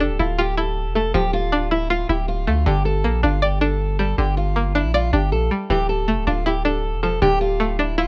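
A dark, eerie trap beat opens at once with three parts sounding together: a picked steel-string acoustic guitar carrying the melody, a string-like resonator pluck in accompaniment, and a long, sustained 808-style bass underneath, all placed up front. The guitar is shadowy in tone, with audible finger squeak and a concert-style body, softened by a low-pass filter and trailed by delay as it moves within a narrow range. The pluck is twangy and bright, built on a sawtooth with a noise layer and a filter sweep, its fast attack decaying away and thickened by chorus. The bass is a deep, mellow sine with a quick onset and a decaying tail, giving the half-time groove its weight. Harmony moves from Dmadd9 to Gm at 2.7 seconds and back at 5.7 seconds, in a rough home-demo mix with studio reverb, cut from a longer piece.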